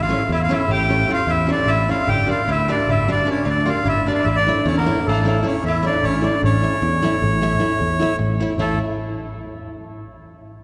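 The accordion leads this fiery, restless Balkan wedding-band piece, its reedy, clear single-reed voice up front as it carries the melody across the whole cut. Beneath it a sitar adds a second line with a buzzing, shimmering tone rich in sympathetic strings. A punchy fingered electric bass anchors the low end while a full-bodied nylon-string guitar, fingerpicked in a deep classical manner, fills in the accompaniment from 0.1 seconds. A large clay-shell darbuka played with soft hands sits close and dry in the background. Set in an asymmetric 11/8 at 304 BPM in A phrygian dominant, the harmony moves from A to Gm and back, all bathed in a long cathedral reverb from a church or concert hall, in a short excerpt cut from a longer piece.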